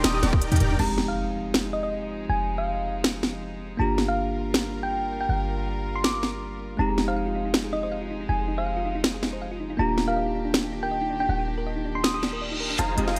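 Lightly reverberant and polished, this lush, dreamy future bass excerpt moves in a half-time feel with a gentle swing on the sixteenths. A round, warbling thumb-piano-like FM pluck carries the melody with a vintage, dark tint, chorus and digital delay, pumping against the sidechain, while a second, mellow thumb-piano-like pluck with a sine sub octave sits in the background playing arpeggios that return at 6.8 seconds. An earthy, distant chamber string section holds bowed chords with light vibrato, and a bell-like, bright tine electric piano adds clean accompaniment from 0.8 seconds, where a background impact also lands. Underneath, a deep, boomy 808-style bass with a noise layer and a fast, decaying attack stays up front alongside an electronic trap kit with a sharp snare, crisp high-passed hats, toms, crash cymbal and studio reverb. A huge, thick detuned supersaw riff, compressed and filtered with cassette-tape colour, flashes at the start and returns at 12.8 seconds, framed by drum fills, a reverse cymbal and a riser over chords moving from Ebmaj7 through Fm7 and Gm7.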